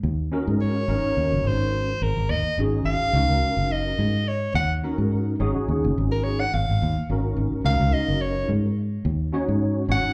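A lightly swung 4/4 groove at 106 BPM carries this soaring, bright jazz fragment, with a round, dark, foam-muted fingered electric bass up front from the start, a clean tine electric piano through a combo amp joining at 0.3 seconds with chorus, plate reverb and slapback echo over an Ab9sus4 chord, and a clear, breathy soprano saxophone taking an up-front solo from 0.6 seconds, its plate reverb and slapback and tape echoes heard alongside the club reverb of a live gig through the venue's PA.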